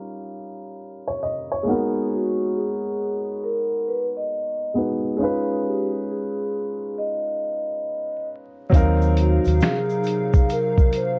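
Lo-fi hip hop in a reflective, hazy mood, cut from a longer piece, opens on a dark, woody upright piano with plate reverb, joined at 2.1 seconds by a ringing, soft-mallet vibraphone carrying the melody over a filter sweep, vinyl crackle and a muffled low-pass tone. At 8.7 seconds a pitched-down, overdriven sampler-style drum kit with a thumpy kick, snaps and hi-hat arrives up front alongside a round, punchy dub bass and a grainy tube shaker in the background. A hollow, flute-like pad with chorus then settles in beneath at 9.2 seconds.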